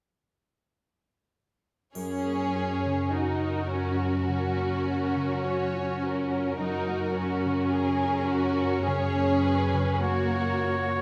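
A distant violin section carries the melody in this slow, serene romantic movement for symphony orchestra, its bowed line coloured by vibrato and expressive portamento. A mellow, ringing concert harp starts the arpeggios at 1.9 seconds, and the strings enter together at 2.0 seconds. A second, up-front violin section sings a focused, smooth second line, while the rich violas fill in the accompaniment and the even-toned cellos hold the bass, all of it lush and symphonic. A dark, dry triangle adds faint touches of percussion at the start, and a close-miked solo oboe, with light vibrato, joins on a second line at 10.0 seconds. The flexible, rubato pulse and the wet concert-hall reverb give this excerpt, cut from a longer piece, a calm and unhurried feel.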